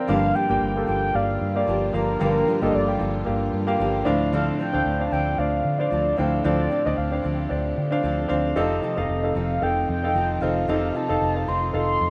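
Piano-driven pop in G minor at 113 BPM, this short excerpt from a longer piece feels dramatic and driving, with a light swing on the sixteenths. A clear, polished grand piano sits up front carrying the accompaniment, while a horn-like synth lead with a soft attack, vibrato and chorus sings the melody in a high register from 0.1 seconds. A fingerpicked jumbo steel-string acoustic guitar with fresh strings plays a full-bodied riff, and a dark, foam-muted vintage electric bass holds down the low end with a round, amped tone. Behind them, a lush, woody string section bows sustained chords in the background. The harmony moves from Gm7 to Dm7 at 4.1 seconds and F7 at 8.6 seconds, all set in moderate studio reverb with the dull top end of a rough home demo mix.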